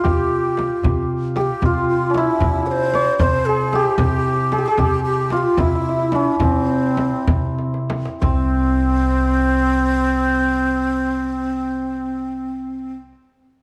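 A moderate echo-chamber reverb surrounds this festive, passionate excerpt of Persian modal ensemble music in a straight 6/8, where a shimmering, hammered santur carries the melody while a breathy, bright ney sits up front with a soft-attacked second line. Beneath them, a woody, thumpy pizzicato upright bass anchors the low end, and a deep, close frame drum and a tombak murmur in the background. The music slows from 4.8 s, a drum fill at 7.6 s closes the opening passage, and the percussion drops out at 8.5 s, leaving santur, ney and bass to carry the new section.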